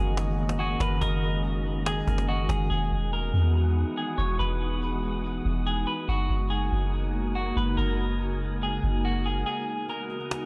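This excerpt opens with a clean electric guitar picking a melody over a glassy FM pad, a soft 808-style bass and a fingerpicked concert harp, all sounding together from the start. It is atmospheric cloud-rap at 142 BPM in a half-time feel, blissful and floating, with chords moving between F#69 and Emaj9. The pad sits up front with a slow attack, ensemble chorus and long release. The guitar is treated with spring reverb, tape echo and a low-pass filter, while the deep, round 808 bass is dark and up front. A woody cajon with faint snares plays dry until 2.6 seconds, and the ringing harp sits in the background before dropping out at 4.2 seconds. An airy, breathy wind-like noise layer hovers behind the other parts, and the cajon returns for a short break from 9.5 seconds as the bass falls away.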